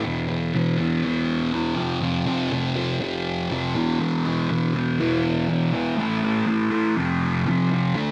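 This rock fragment, cut from a longer piece, moves at 121 BPM in a straight 4/4 and carries a hypnotic, mysterious mood. A single thick fuzz electric guitar plays alone from 0.0 to 8.1 seconds, picked and double-tracked, spanning E2 to D4. Its dark, distorted tone is sent through a phaser and placed up front in the mix. The harmony moves from E5 to F5, back to E5, then to A5 at 6.0 seconds before landing on F5 at 7.0 seconds. Light reverb gives the guitar a modest sense of space.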